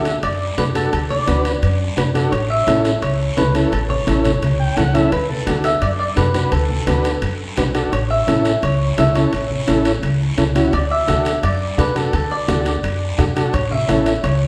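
A slightly broken-up, picked electric guitar with spring reverb carries the melody in this sunny, danceable cumbia excerpt, over a reedy, heavily vibrato-laden overdriven combo organ, a woody pizzicato upright bass up front, raspy guiro, ringing metal-shell timbales and thick-skinned, low-tuned congas in the background, with a drum fill and organ fill around 4.2 seconds, a soft-beater bombo joining at 10.7 seconds, and the band playing live together in a stone room.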